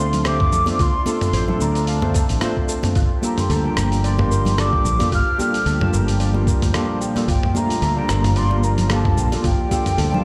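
Sunset chillout in G minor at 111 BPM with a swung 16th feel, this smooth, wistful excerpt moves from Dm7 to Gm9 as a breathy, expressive concert flute carries the melody high above a tine electric piano with fast tremolo, both trailed by tape echo and shimmer reverb. A lush, detuned unison pad with chorus sustains chords in the background alongside metallic steel pan arpeggios, while a round, punchy fingered bass sits prominently underneath. A gritty, tape-warm sampler-style kit of hi-hat, rim click, shaker and toms joins bright, dry congas and a thumpy electronic kick that enters at 0.4 seconds, all heard through a big system in a bare stone room.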